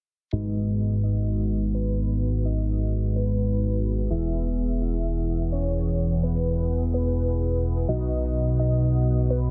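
A straight 4/4 pulse at 127 BPM drives this expansive, emotional progressive house passage in G# minor, cut from a longer piece, moving through G#m7, E and B. A fat, nasal, saturated analog bass sits up front alongside glossy, retro chorused polysynth stabs that carry a filter sweep and digital delay, while a bold, detuned unison lead sings the melody through dub echo, joined by a soft, round, dark pluck as a very quiet second line. A grainy, distant shekere adds faint percussion, and from 1.8 s a reversed, dreamy granular texture glimmers high above, all within light reverb and a dense, heavily limited, low-pass-filtered master.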